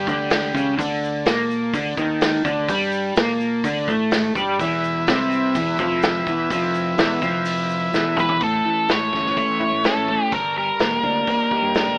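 Mysterious and trippy, this 126 BPM psychedelic rock excerpt in A phrygian dominant sets a dark, slightly broken-up guitar riff through a rotary speaker over buzzy combo organ chords with light vibrato, a warm background bass, a punchy vintage drum kit with a pumping room, and a grainy, very quiet egg shaker, until a drum fill at 7.9 seconds ushers in an up-front octave-fuzz lead guitar with tape echo at 8.2 seconds, all with little reverb and an AM radio sound.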